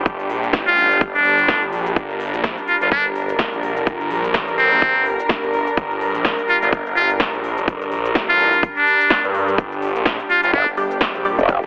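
A muted trumpet leads this bouncy, gritty bass house passage in G minor at 126 BPM, entering at 0.7 seconds with a buzzy, thin, brilliant solo tone, light vibrato, scooped notes and a pop-style delivery sitting up front. Beneath it, a dark studio string section holds sustained chords with a reedy, gut-string, period-style character, heard distant and pumping against the kick, while a swirling, thick detuned saw bass drives the low end through phaser and tube saturation. The tight, tape-colored electronic kick sits forward in the mix, joined by an overdriven big-room kit of punchy snare, crisp hats and shaker, all in 4/4 with a 16th-note swing. Near the close a growling, wobbling bass arrives at 10.5 seconds, aggressive and bright with chorus and saturation, and at 10.8 seconds a bold, nasal orchestra-hit-style stab appears in the background with dub echo and its own reverb. The harmony opens on a G5 chord, and the whole cut from a longer piece carries a telephone-like sound with light reverb and digital ambience.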